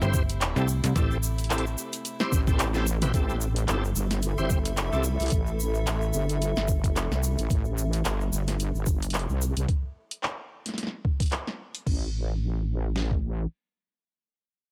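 Light reverb and digital ambience frame this gritty, playful glitch hop excerpt, which opens on a drop where a very quiet, reedy gut-string chamber section holds chords, a shouting tonewheel organ with slow rotary and sidechain pumping stabs, and a snappy, metallic FM bass briefly sounds over a grainy egg shaker, as a thumpy, pitched-down sampler kit and a cracking drum and bass kit with bright hats join almost at once; a heavy, detuned wobble bass takes over from 2.3 seconds, and a cloudy granular pad drifts through between 4.0 and 7.5 seconds.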